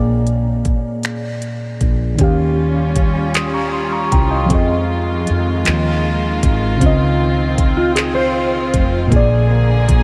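A mellow FM electric piano, soft and full-bodied with chorus and phaser, accompanies this tender, slow six-eight R&B excerpt at 52 BPM, over a woody, growly fretless bass in lush chorus and a smooth drum kit of finger snaps, handclaps, hi-hat and knocking kick, while warm bowed chamber strings enter at 2.2 seconds, a clean electric guitar adds a brief second line with delay at 7.8 seconds, and warm chords from Bb7 through Eb9, Fm7 and Dbmaj9 drift in a dreamy, reverb-soaked mix.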